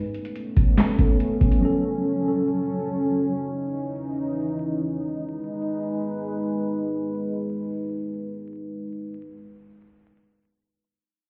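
This short excerpt sounds as if heard muffled through a wall, with a stone room reverb, a light digital ambience and vinyl crackle hanging over a menacing, melancholic trap piece in free time and G# phrygian. A dark analog pad carries sustained chords from the start to 9.1 seconds, its detuned sawtooth and triangle tones thickened by a sub octave, chorus and a low-pass filter, with a slow attack and long release. A booming analog drum machine sounds only briefly, from 0.1 to 1.6 seconds, with a deep kick, crisp snare, handclaps and metallic hats, the snare, clap and hats set in a short room. A mellow tine electric piano adds clean, direct accompaniment between 1.0 and 3.3 seconds, softened by its own low-pass filter. The harmony moves from Aadd9 through F#m and C#madd9 to G#m as the music shifts into a second section at 5.0 seconds, leaving the moody pad to hold the close.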